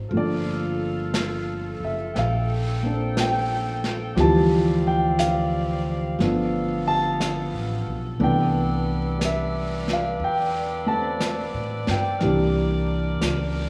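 Swung eighths at a slow 60 BPM in 4/4 carry this smoky, melancholic jazz ballad excerpt, where an up-front concert grand piano with deep bass lays down accompaniment over woody, growly pizzicato upright bass and a dark, smooth vintage brush kit of brushed snare, snare drum and hi-hat, while a distant, roomy saxophone section with light vibrato and soft attack holds sustained chords through Gm9, Dm11, G9, Cmaj13 and C9 in light studio reverb, all tuned to A4 = 437 Hz.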